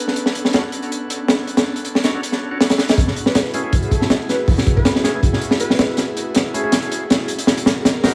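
A straight 4/4 jungle breakbeat drives this raw, frenetic drum and bass excerpt, its crunchy, saturated kit of tight kick, high-tuned snare and hi-hat sitting up front with a gritty, rolled-off top, building from 3.0 s into a drum fill at 6.0 s. A breathy, chorused pad holds soft sustained chords over Bm9 and F#m9 in the background, while a very quiet glassy texture drifts through the opening before dropping out at 3.0 s, and a reedy, lightly overdriven tonewheel organ fires stabs through slow rotary speaker and dub echo. A catchy plucky unison lead with vibrato adds a short mellow melody in the background from 3.3 s, all set in an echo-heavy mix with moderate plate reverb and small room ambience.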